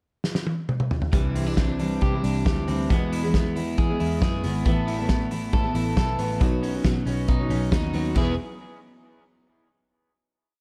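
The piece opens with a loose indie drum kit alone, rolling through a fill over a pickup bar before the band arrives at 1.1 seconds. This is a breezy, nostalgic piece of jangly indie pop in 4/4 with a straight feel. The drums sit up front with a fat snare, punchy kick and off-beat open hi-hats in a dance-floor indie beat, and crash and toms add color. A full-bodied jumbo acoustic guitar drives strummed open chord shapes through Cadd9, E, Asus2 and Badd9. Over it, a slightly broken-up electric guitar plays fingerpicked roll-pattern arpeggios bathed in lush chorus and analog delay, while a round, foam-muted electric bass carries a melodic line with slides. The production is dark and warm with light studio reverb, and the short verse resolves onto a final E chord at 8.2 seconds.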